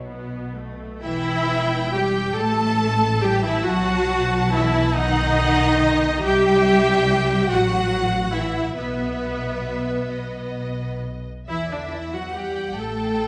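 Up-front violas with a clear, intense vibrato sound first over expressive cellos and soft-attack double basses, and at 1.0 seconds two lush violin sections join, one carrying a focused, yearning melody with a smooth top and the other an even second line, in this solemn, rubato classical slow movement for string orchestra in 6/8, set in a moderate stage reverb with a faint mains hum underneath.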